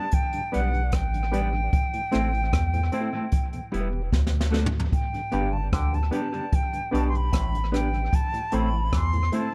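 Flute and mellow electric guitar open together at once, the flute carrying a pure, vibrato-tinged melody high in its range while the clean, fingered guitar accompanies, both touched by tape echo, in this laid-back, uplifting roots reggae cut from a longer piece, moving at 75 BPM in G major. A jazz kit played with brushes sits up front, pairing a high-tuned snare and rim clicks with a boomy kick, and it takes a fill from 4.1 to 4.9 seconds before the progression returns to G. Around it, a round tonewheel organ with key click and slow rotary speaker murmurs in the background, a barky, reedy electric piano adds lightly overdriven stabs through its fast tremolo, and a deep, soft dub sub bass holds the bottom up front. At 5.3 seconds a nasal, hollow clav enters with an overdriven auto-wah riff, thickening the second pass through the chords. The whole mix carries light reverb and a dark, warm production.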